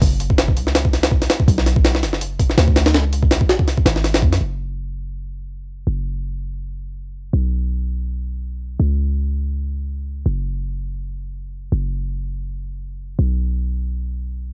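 The recording has a dry, home-taped cassette sound with little room ambience. This dark, nostalgic drum and bass excerpt, steeped in jungle, moves at 164 BPM in 4/4 with a light 16th-note swing. A gritty, compressed sampler-style jungle kit sits up front. Its pitched-up hits are built from a thumpy kick, a high-tuned snare and hi-hat, and carry a tape-warm character and a touch of studio reverb. The drums drop out at 4.4 seconds, leaving the 808-style bass alone for the rest of the excerpt until 14.5 seconds. That bass is deep, boomy, warm and mellow: a sine tone with a noise layer, a fast attack and a decaying tail. It ranges from F#1 to F#2 and is also placed up front.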